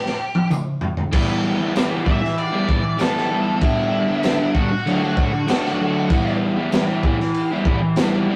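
A dark fuzz lead guitar solo opens this menacing, gritty garage rock fragment over a drum fill from a saturated breakbeat kit with sampler grit, a high-tuned snare and a rolled-off top, while a jingly tambourine sits in the background, and at 1.1 s an up-front, double-tracked overdriven guitar riff enters over E minor, G and D chords, all heard in a rough rehearsal-room recording with moderate reverb.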